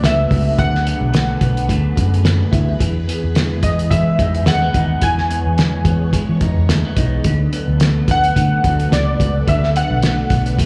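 This laid-back, dreamy indie and bedroom-pop excerpt opens with the full band at once, heard as a live gig through the venue's PA, with club reverb and small room ambience. Up front, analog keys carry the melody in a round, detuned blend of pulse and sawtooth tones, with fast-attacking, decaying notes and a filter sweep, dressed in analog chorus, slapback echo and tape echo. Beneath them, an electric guitar through a small old amp plays slightly broken-up, compressed accompaniment with subtle chorus, warbly pitch drift and slapback echo, while a phased string machine holds bright, swirling sustained chords in the background. A dark, foam-muted fingered bass sits punchy and up front beside a cloth-damped drum kit whose fat snare, tight kick and hi-hat sound muffled, gritty and rolled-off on top, with a light swing on the sixteenths. The harmony moves from D6 to Emaj7 at 2.8 seconds and returns to D6 at 7.2 seconds.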